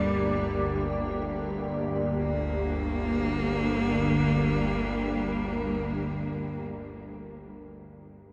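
In free time, this desolate, unsettling dark ambient drone in G minor rests on a tense, string-like bowed drone deep in the low register, bright and up front with detuned sawtooth grit, vibrato and a phaser. Above it, a close, focused solo cello plays a clear bowed melody between G3 and Bb3 with vibrato and a diffuse ambient delay. A blurred, evolving granular cloud pad holds sustained chords, while a resonant, bubbling stepped-filter texture sits in the background with chorus until 2.2 seconds, all inside the long, wet wash of a cathedral reverb in this brief excerpt from a longer piece.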